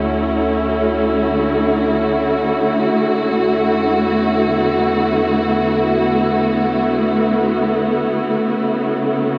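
Luminous and weightless, this ambient fragment, cut from a longer piece, floats on sustained chords. A muted studio string section, bowed con sordino, sits up front with a dark, veiled tone, vibrato and a smooth top, holding its chords from the start to 9.4 seconds. Beneath it, a round sine sub bass hums deep in the background with a mellow, fast-attack sustain and fades out, stopping at 8.4 seconds. The harmony drifts from Dmaj9 to E9sus4 at 2.9 seconds before settling on Aadd9. A huge, wet reverb with a long tail bathes the strings and bass, giving the whole fragment a suspended, cavernous glow.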